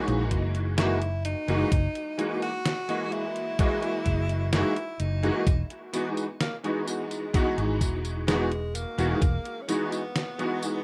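A close-miked tenor saxophone carries the melody in a jazz style, its clear, soft-attacked tone shaded with vibrato and roughened by vintage 12-bit sampler grit and tape echo. This faded, nostalgic vaporwave fragment moves at an unhurried pace, with an electric grand piano comping up front through ensemble chorus and analog delay, its clangy low register and short sustain giving the harmony a vintage sheen. The chords shift from F#13 to Emaj9 at 5.5 seconds. Beneath them, a fingered electric bass sits dark, round and punchy until 9.4 seconds, when the thumpy electronic kick also stops. A detuned 8-bit drum machine supplies hi-hat, a medium-tuned snare and tambourine, and it and the kick both sound re-recorded in a small room. The whole cut has the rough feel of a home demo on cassette, set in a moderate studio reverb.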